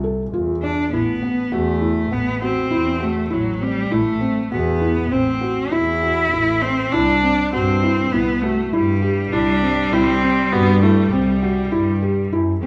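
A felt-muted upright piano opens with soft, intimate arpeggios, its thick felt giving a dark, mellow tone with short sustain, while a single bowed double bass plays sul tasto beneath it with a soft attack and a pure, floating quality. At 0.6 seconds a bright, focused cello enters with the melody, singing with vibrato. This short passage of contemporary chamber music in an uneven 5/4 meter feels playful and restless, its harmony moving from F6 to Amadd9 and settling on C at 6.9 seconds. At 9.3 seconds a viola joins with a biting, earthy second line and light vibrato, holding for about three seconds before dropping out. The strings sit up front yet carry a slightly distant character, and a moderate concert hall reverb adds space around the small ensemble. The music is cut from a longer piece.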